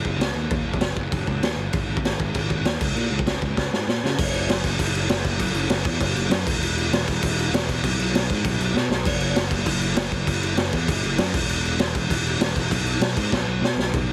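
A raw garage drum kit and a fuzzed-out picked electric bass start together at once in this energetic, rowdy punk rock excerpt, driving a straight 4/4 at 197 BPM in Gb major. The drums sit up front with a small-room, mid-forward character: a punchy kick, a high-tuned snare and crashing cymbals, all saturated and gritty with a rolled-off top. Beneath them the bass growls through overdrive and fuzz, its direct-and-amped tone ranging from E1 up to Db3. A drum fill at 3.6 seconds leads into a new section at 4.2 seconds, and further fills mark the phrases before the passage is cut off at about 14 seconds. The mix is dry and squeezed into a heavily compressed, radio-style sound that keeps the duo loud and in the listener's face.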